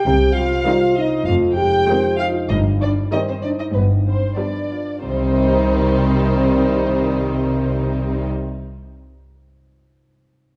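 Cinematic film cue in C minor at 96 BPM, playful and whimsical with a quirky, mischievous streak, moving through Cm, Fm7 and G7 before settling back on Cm at 5.0 seconds in this short cut from a longer piece. A dark, woody chamber violin section carries the bowed melody over mellow French horn chords and ringing, thumb-plucked concert harp arpeggios, while a distant, soft-attack double bass section and a rich cello section sitting in the background hold the bass. From 0.7 seconds a smooth, even symphonic violin section adds a second line and an expressive chamber viola section fills in accompaniment, all set in a moderate recital hall reverb.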